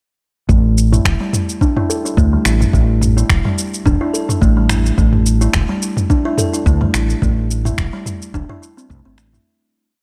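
Meditative and hypnotic, this short organic downtempo piece settles into a single groove at 107 BPM in 4/4, with a light 16th-note swing. From 0.5 seconds a mellow kalimba sits up front with soft, airy fingertip plucks, cycling a 16-step sequence of short arpeggios through a low-pass filter sweep and delay. Beneath it, a woody fretless electric bass carries a round, punchy dub-style line with a dark, hollow-body tone and tube saturation. A tape-warm deep house kit layers finger snaps, shaker and low toms into an organic beat, while a soft electronic kick, re-recorded in a small room, stays in the background. The harmony rests on Esus4 before shifting to C6 at 7.2 seconds, as a fade-out that begins at 6.5 seconds closes out the dry, close-sounding mix.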